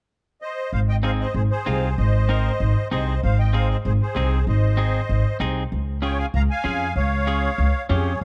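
A straight 4/4 cumbia groove at 192 BPM drives this danceable, joyful Latin excerpt in Ab major, with a woody, up-front upright bass plucked pizzicato from 0.7 seconds beneath a chord move from Ab to Db at 5.7 seconds. A reedy, shimmering musette accordion carries the melody from 0.4 seconds, while a clean, twangy electric guitar adds picked, compressed accompaniment from 1.0 seconds. Light reverb and a dark, warm production round out the sound of this short fragment cut from a longer piece.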